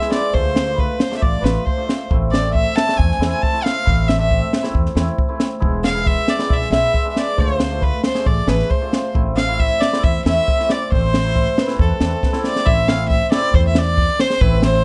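Klezmer in A harmonic minor at 136 BPM, this bittersweet, soulful cut from a longer piece moves in a straight 4/4 over a Dm, Am and E progression. A clear violin carries the melody up front, its nasal, earthy bowed tone touched with light vibrato and an airy bow. Behind it, a mellow, reedy accordion plays a second line with slow beating until 12.4 seconds, while a hammered cimbalom supplies shimmering, ringing accompaniment. An upright bass enters at 0.3 seconds with woody pizzicato on steel strings, and a compact cocktail drum kit keeps things dry with a punchy kick and high-tuned snare. A drum fill at 12.2 seconds leads into a new section at 12.7 seconds, all framed by light reverb in a dark, warm production.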